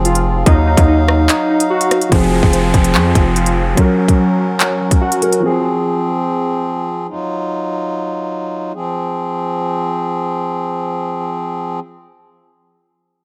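Menacing and dark, this half-time drill excerpt opens with a reedy, breathing harmonium holding chords throughout alongside warbling, detuned lo-fi synth keys arpeggiating through chorus and delay, a saturated 808-style bass with a noise layer and a drill kit of hard-clipped kick, crisp hats, handclaps and rim clicks, all under light reverb, before a boxy, filtered grand piano with audible action noise and a downlifter enter at 2.1 seconds, the piano carrying on until 7.1 seconds.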